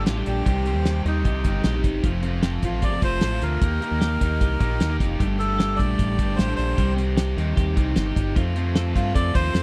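A reedy, breathy melodica carries the tune from the first moment, its nasal, mellow voice given a slapback echo, while a biting overdriven guitar, a twangy twelve-string electric and a round, dark fingered bass all start together, with the drums joining at 0.1 seconds. This is a short excerpt of jangly indie pop at 152 BPM in a straight 4/4, wistful and bittersweet in mood. The compressed, bright twelve-string spins clean picked arpeggios, also touched with slapback echo, while the overdriven guitar adds picked accompaniment. The cloth-damped kit sounds thuddy and up front, with a fat snare, tight kick, hi-hat and a rolled-off top, and the direct bass sits just as close beside it. The harmony moves through Cm, F, Eb and Gsus2 before returning to Cm and F, all within one section captured in a dry, close 1970s-style studio sound.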